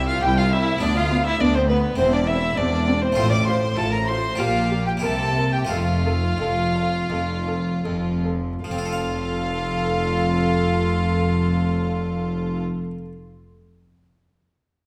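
Lively and festive, this baroque-style concerto movement in F major moves in 4/4 at 75-103 BPM and slows between 2.0 and 8.6 seconds, with a solo violin of gut-string, lightly vibrato period tone leading the melody over a background violin section, a rich, smooth-topped violin section on the second line, a dark, distant viola section, a warm cello section, a rich double bass section and an airy, bright Flemish-style harpsichord sounding until 13.1 seconds, all set in a moderate recital hall reverb in this fragment cut from a longer piece.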